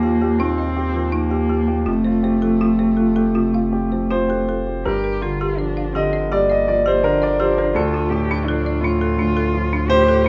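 Neoclassical piano and strings in G minor, this melancholic, longing passage moves at 83 BPM in 4/4 with a rubato feel, tuned to A4 = 443 Hz. A concert grand piano carries the accompaniment up front, its tone warm and open with deep bass. Beside it, a single con sordino cello plays a bowed second line that is dark and veiled, with vibrato and a smooth top. A folk marimba struck with hard mallets adds bright, woody, dry arpeggios, while a punchy sine sub bass with a pitch-drop attack sustains underneath. The harmony moves from Ebadd9 to Fadd9, then turns at 4.9 s to Gm7 and Dm, set in a light reverb, in a clip cut from a longer piece.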